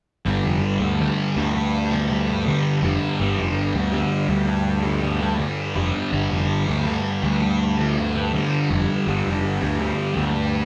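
Hypnotic and kaleidoscopic, this rock excerpt rides a straight 82 BPM groove in 4/4, sitting in G mixolydian over a single G7 chord from 0.3 seconds. A thick fuzz guitar carries the riff up front, double-tracked and distorted with a phaser coloring its low register. Beneath it, a fuzz picked electric bass adds punchy, overdriven weight from F1 to D2. A vintage combo organ holds sustained chords in the background, clean yet buzzy with heavy vibrato. The band plays live in one room with moderate studio reverb, and the whole passage runs as one continuous section cut from a longer piece.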